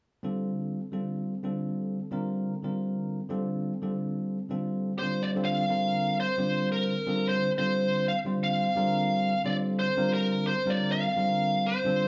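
A smooth, overdriven lead guitar carries the melody from 5.0 seconds, its picked, up-front tone sitting high and singing over the band. Before it arrives, a bell-like tine electric piano plays the accompaniment alone from 0.2 seconds, bright, clean and direct, laying down a Gm11 chord before moving through suspended C harmonies. This short jazz cut, taken from a longer piece, has a nocturnal, funky mood with a straight feel in 4/4. The two parts sound like a band playing live together in a small space, with a moderate stone-room reverb lending the recording a hard-walled ambience. Both instruments continue through to the end at 12.1 seconds.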